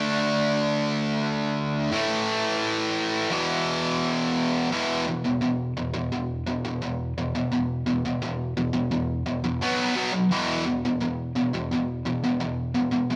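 A bright, overdriven, double-tracked electric guitar plays alone and up front through this dark, aggressive metal passage cut from a longer piece, its picked power chords moving from D5 through A5 and E5 at a straight 86 BPM in 4/4, shifting to a new section at 4.7 s and touching B5 before settling back on E5, all spanning E2 to D4, tuned to A4 = 439 Hz, and ringing in a large studio room with moderate reverb as if captured live.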